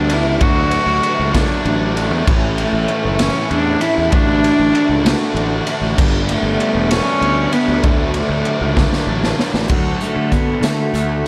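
The recording has a big arena sound, with a lush hall reverb over a small room's ambience. This cut from a quiet-loud alternative rock piece feels angsty and cathartic, moving in a slow 6/8 at 65 BPM, counted in dotted quarters. A rich, reedy bowed cello carries the melody with a gut-string, period-style tone and slapback echo. Beneath it, a fuzz guitar and an overdriven electric guitar sit in the background playing riffs, while a growly, bright fingered bass adds fuzz and overdrive. The chords move from D through A, D/A and G back to D. The raw garage drum kit is gritty and up front, with a boomy kick, a pumping room sound and a rolled-off top, and it plays a fill from 8.8 seconds. At 9.7 seconds the fuzz guitar drops out, the cello takes a solo, and a picked steel-string acoustic guitar enters with arpeggios, finger squeak and tape echo.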